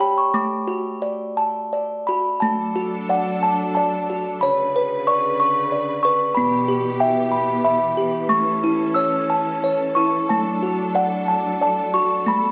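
A delicate, tinkling music box opens alone, its slightly out-of-tune melody sitting up front in a sleepy, innocent lullaby in three with a gently rubato feel. At 2.4 seconds a veiled, distant string section, bowed with mutes and vibrato, slips in beneath with lush sustained chords that drift from D through Bmadd9, Em/B and A before settling back on D. The dark production is bathed in a moderate recital-hall reverb, and this brief passage is cut from a longer piece.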